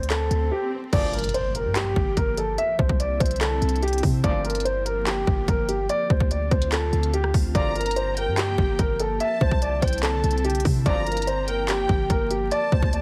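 Brooding, menacing trap-flavoured hip hop at 145 BPM in a half-time feel, set in G dorian and cut from a longer piece, opening on a background swell and impact as a dark, boxy concert grand piano carries the melody through a low-pass filter up front, over a deep, boomy sine-style 808 bass and an up-front electronic kit of hard-clipped kicks, crisp hats, handclaps, rim clicks and crash. An ethereal, detuned pad with ensemble chorus and reverb fills in sustained chords from 1.5 seconds, while a mellow brass ensemble drops brief stabs in the background around a Gm7, Cadd9 and Dm7 cycle. At 7.5 seconds a distant, lush violin section with vibrato, portamento and digital delay adds a high second line, all framed by heavily compressed, radio-like ambience with vinyl crackle.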